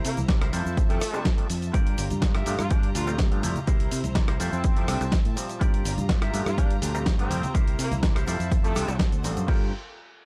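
A mellow, vintage horn section opens this nostalgic, groovy filtered disco house cut at 124 BPM in G dorian, its melody roughened by 12-bit sampler grit and digital delay, over lush bowed strings in the background, a twangy clean guitar riff, a punchy fingered bass with tube saturation, a gritty, compressed sampler-style drum kit and very quiet, bright conga and egg-shaker touches, before a hollow, nasal clav through a phaser and an up-front analog kick join at 0.3 s, with sidechain pumping on the horns, strings, guitar, bass, clav and kit, all moving through C7, Fmaj7 and Gm7 in a dark production.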